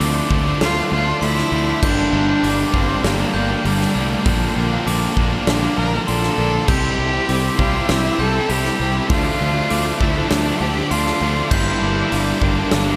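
At a straight 99 BPM in 4/4, this brooding, cinematic post-rock excerpt in G dorian sets a rich, expressive bowed cello melody with vibrato and portamento over lush, very quiet string-section chords, a ringing bell-like glockenspiel arpeggio in the background, an overdriven electric guitar riff alongside a thick fuzz guitar riff, a growly fuzz bass and a punchy, natural arena drum kit of kick, snare, hi-hat and crash, all moving through Dm7, Gmadd9, Bbadd9 and C in a dreamy mix soaked in a 6.5-second reverb.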